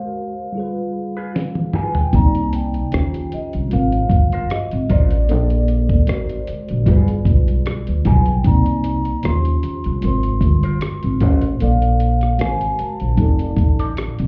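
A lightly swung sixteenth-note groove in 4/4 sets a relaxed, warm R&B and neo-soul mood in this excerpt cut from a longer piece. A worn, slightly out-of-tune tine electric piano with ensemble chorus supplies lush extended chords from the start, beneath a mellow, airy vibraphone melody played with soft mallets and a slow motor vibrato. An electric guitar through a small old amp adds a slightly broken-up, lo-fi second line with wah from 1.2 seconds. A gritty, compressed sampler-style drum kit arrives at 1.4 seconds with a fill, then settles in up front with its thumpy kick, fat snare, hi-hat, rim clicks and toms. At 2.1 seconds a woody, bright pizzicato upright bass joins, also up front, and the whole mix sounds muffled, as if heard through a wall, with a touch of club reverb.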